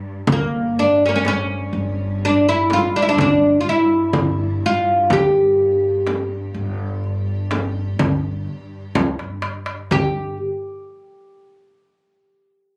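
A woody, fretless oud leads this longing, hypnotic Arabic maqam ensemble excerpt in 10/8, up front over a deep frame drum, crisp metal-shell darbuka, thumpy pizzicato upright bass and a lush bowed cello section droning in the background, with a drum fill at 9.0 seconds, all heard through a phone-in-the-room recording with club reverb and compression.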